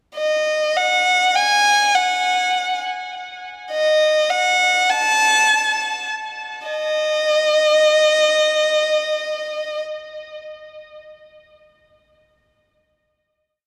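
In free time and tuned to A4 = 436 Hz, this complete, hopeful and euphoric rock piece features a single up-front bowed violin playing alone from 0.2 to 9.8 seconds, its warm, smooth-topped tone carrying vibrato, soft attacks and portamento through an expressive motif-based melody in sentence-like phrases before resting on a final note from 6.7 seconds, with tape echo on the violin and a wet recital hall reverb surrounding it.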